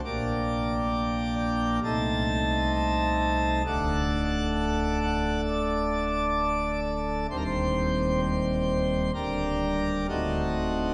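A solo pipe organ on full plenum opens the recording, its mixtures giving a brilliant, romantic voicing that sits up front. This is a solemn, grave chorale-style classical piece in G minor at 66 BPM in 4/4, played with rubato so the pulse breathes freely. The organ's range reaches from a deep D1 up to A5, spanning the bass and treble registers. The harmony moves from G minor over B-flat through a diminished chord to D major, then on to C minor, G minor over D, and a D7b9 at 10.1 seconds. A cathedral reverb with a 4.9-second decay surrounds the instrument, as heard in a church or concert hall. The passage lasts 10.9 seconds and is cut from a longer work.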